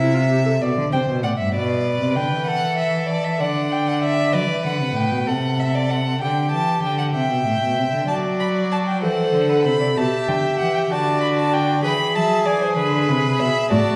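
A baroque-style classical fugue for string quartet, this joyful, lively passage is cut from a longer piece and moves at 64 beats per minute in a flowing 12/8, tuned slightly above standard pitch. The cello anchors the bass from the opening, its bowed tone full and even with a smooth top, set up front alongside the lead violin. One violin carries the melody in its upper register from 0.9 seconds, played with vibrato, a soft attack and expressive portamento, while a second violin weaves a smooth, steady second line beneath it. The viola sounds briefly at the start, then returns at 8.1 seconds as the music shifts into a new section, filling the middle with an even, vibrato-rich accompaniment. The harmony travels from C and G through D and D7, later touching D7/F#, G5 and E7. A reverberant recital hall surrounds the quartet, heard from further back in the room, lending the ensemble a glowing, spacious resonance.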